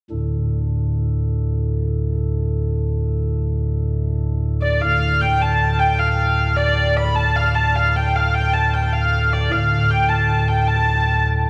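A cavernous cathedral reverb with a long 5.3-second decay surrounds this brief medieval excerpt in D minor at 102 BPM in a straight 6/8, where a chamber organ's bright, chiffy flute stops hold a low drone from 0.1 seconds. A nasal, reedy hurdy-gurdy with an airy bow enters up front at 4.6 seconds to carry an ancient, mysterious melody high above it.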